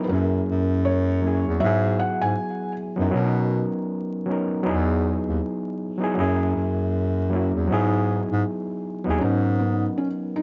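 Lo-fi hip hop at 79 BPM in 4/4, swung on the sixteenths, this short cut from a longer piece feels melancholic and hazy. A felt-muted upright piano carries the melody, soft and dark with audible action noise and an analog delay, playing from the start to 2.7 seconds and returning at 9.2 seconds for the closing section. Underneath, an overdriven reed electric piano sits up front through the whole passage, reedy and gritty through a combo amp with a cassette-tape colour. A breathy bass clarinet holds the low end in a jazz style, up front with a light vibrato. The harmony moves through rich chords such as F#9, Bmaj9 and Emaj9 before landing on G#m11 at 9.2 seconds. Light reverb and studio ambience frame an echo-heavy mix dusted with vinyl crackle, its top end rolled off to a muffled glow.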